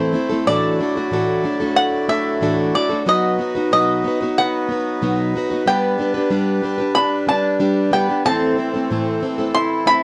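Acoustic folk in G major at 93 BPM, peaceful and hopeful, where a bright, twangy bluegrass banjo picked with fingerpicks carries the melody up front over a picked, plugged-in steel-string acoustic guitar with audible finger squeak, a reedy accordion holding sustained chords beneath, and a metallic, nasal resonator slide guitar entering at 4.4 seconds with a second line, all moving through Dadd9/A, B, G and Am in moderate studio reverb on worn cassette tape with warbly pitch drift.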